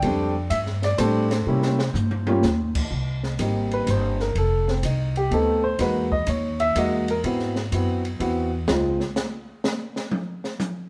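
Jazz piano trio in a swinging waltz time, with a sophisticated mood, cut from a longer piece. The upright piano carries the melody with a woody, natural tone and long sustain, sitting up front and moving into a solo at 2.9 seconds over rich harmony, from Abmaj7 through F7#11 and Emaj9#11 to an altered Ab7. Beneath it the pizzicato upright bass is thumpy and close, its steel strings giving a warm low end. The drum kit sits further back, with dark cymbals, a high-tuned snare and a boomy kick, adding a short fill early on and taking a solo from 8.7 seconds. Piano and bass stop at 9.0 seconds, leaving the drums alone to close, and the trio sounds as if playing live together in a moderate stone room with a natural reverb tail.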